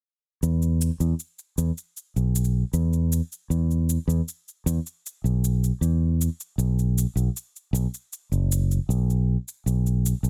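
A punchy fingered electric bass sits up front in this short folktronica clip, its direct, amped tone moving in a low register between F#1 and E2. The mood is warm and playful, with a straight feel in 4/4. Alongside the bass, a cabasa adds an electronic, produced texture, its sound roughened by overdrive and set in studio reverb while sitting well back in the mix. Both parts play together from 0.4 to 10.3 seconds, holding a single section throughout. The overall sound is close and dry, and the passage is cut from a longer piece.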